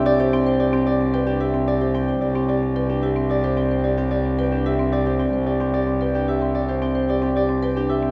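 A Celtic harp, a marimba played with medium mallets and a bowed cello all sound together from the opening moment of this bright, propulsive minimalist classical excerpt, set in C major at 111 BPM in a straight 3/4. The mellow, ringing harp carries the melody up front while the warm marimba spins out arpeggios in the middle register. Beneath them, a single cellist holds a low C bass line with soft attacks, expressive vibrato and portamento, all bathed in the long, wet reverb of a church.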